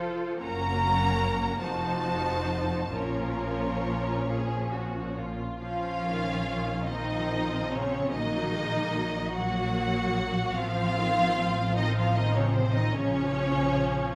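Elegiac and melancholic, this slow romantic fragment for string orchestra sways in a rubato 6/8 as a lush, up-front violin section carries the vibrato-laden melody from 0.4 s, supported by a distant second violin line, clear, focused violas, expressive cellos set in the background and smooth, even double basses, all bowed ensembles bathed in a wet scoring-stage reverb.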